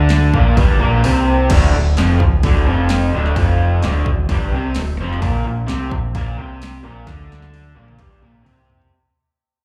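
Heard as a live gig through the venue's PA with a touch of club reverb, this swaggering, gritty garage rock cut moves at 130 BPM in a straight 4/4, shifting between Gmadd11 and Dm. An overdriven, lo-fi guitar riff, double-tracked and up front with spring reverb and slapback echo, rides over a growling picked electric bass that is overdriven and direct and amped, while a tape-warm analog drum machine hits with punchy kick and snare. The kick and snare drop out at 1.0 seconds and return at 1.5 seconds, when the sound begins fading out, and a drum fill arrives at 7.1 seconds.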